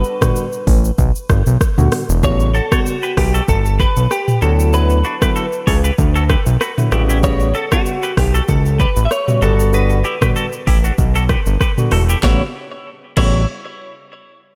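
Romantic and joyful, this afrobeats excerpt at 96 BPM in A mixolydian sets a twangy, direct-recorded clean electric guitar melody with ensemble chorus and delay over a fat, detuned sawtooth analog bass with a filter sweep and an electronic afro-pop kit of deep kick, sharp snare, smooth hi-hats, shaker, rim clicks, toms and crash, while a barky tine electric piano with lush chorus moves through Gmaj7, A13 and D69, and a second picked, compressed clean electric guitar enters at 2.5 s with a bright riff through lush chorus and delay, the mix sitting in a light reverb.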